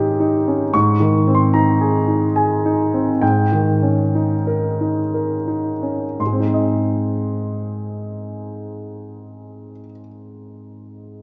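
A clear concert grand piano carries the melody throughout this short classical fragment, cut from a longer piece, sounding close and up front with deep bass, long sustain and a natural tone across a span from Ab2 to Db6. The mood is lyrical and passionate, set in triple metre with a rubato feel that lets the phrasing breathe freely. Over the opening 6.2 seconds the pace gradually slows, as the harmony moves between an Eb7 over an Ab bass and Ab major chords. A second section begins at 6.2 seconds, resting on Ab. The piano sits in a concert hall with a wet, reverberant acoustic that lingers around each phrase, and the instrument sounds tuned slightly high, to A4 = 444 Hz.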